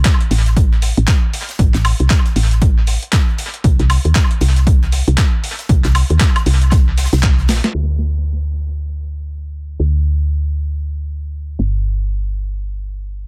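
An echo-heavy, low-passed small-room sound wraps this smooth, late-night deep house excerpt at 117 BPM in swung 4/4, where a punchy, overdriven electronic kick and a gritty, dusty soul sampler-style kit of crash, handclaps, hi-hat, snare and woodblock with tape echo ride over a very quiet, airy jazz brush kit of hi-hat and snare, until the drums give way after a fill at 7.5 seconds and the woody, round FM bass pumps on alone under a filter sweep until 13.3 seconds.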